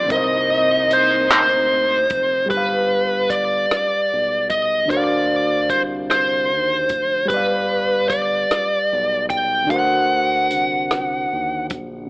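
A dark, distorted lead guitar carries the yearning melody up front in this slow, late-night six-eight R&B, its picked lines ringing with slapback echo over a gritty, reedy electric piano heard through a combo amp. Veiled, con sordino strings hold sustained chords in the distance only until 2.5 seconds, while a round analog bass sits deep in the background and a dry cocktail drum kit with a tight kick, hi-hat, rim click and handclaps plays up front. Light reverb and an AM radio sound colour the mix of this passage cut from a longer piece, which moves from Cm9 through G7 and altered D chords.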